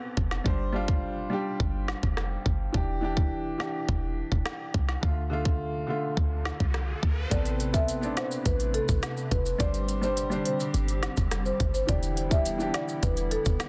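Hypnotic and sultry, this dancehall excerpt in A minor moves at 105 BPM, opening with a boxy baby grand piano pumping under sidechain alongside a punchy, decaying 808-style bass and an up-front electronic kit with a tight kick, crisp hats, rim clicks and a woody, softly clipped snare. A background riser builds from 6.1 seconds, and at 7.3 seconds a rosewood marimba carries the melody through digital delay, joined by a hollow, flute-like pad with ensemble chorus and sidechain pumping, plus ringing, saturated maracas. Light digital ambience surrounds a dense, heavily limited modern master as the chords move through Amadd9, Gsus4 and Em7.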